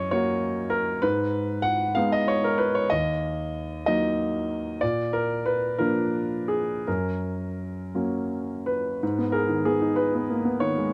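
Neoclassical minimalist piano in a reflective, intimate mood, this short fragment of a longer piece features a solo grand piano with a smooth, vintage tone, played with rubato in 6/8. Its chords move from F# through G#m, D#m and A# before returning to F# and settling on G#m at 9.0 seconds. The close, dry recording carries a hint of small-room ambience and keeps the piano up front.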